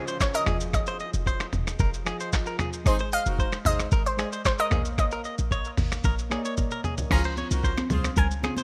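Joyful and breezy, this afrobeats excerpt moves at 113 BPM in Db major, with a detuned analog pluck carrying the melody through chorus and delay over soft, mellow electric-piano-like synth keys and a twangy, direct-recorded clean electric guitar riff, while a very quiet downlifter ends by 2.9 seconds. A muffled, tape-warm sampler-style drum kit sits up front with a thumpy kick, snaps, claps, shaker and toms and a fill at 6.6 seconds, joined by a punchy, tight 808-style bass, a clear horn section adding short lines with light vibrato, and bright, high-tuned congas arriving at 7.4 seconds. The chords move from Fm7 through Ab and Bbm to Dbmaj7 in a rough home demo mix with digital ambience.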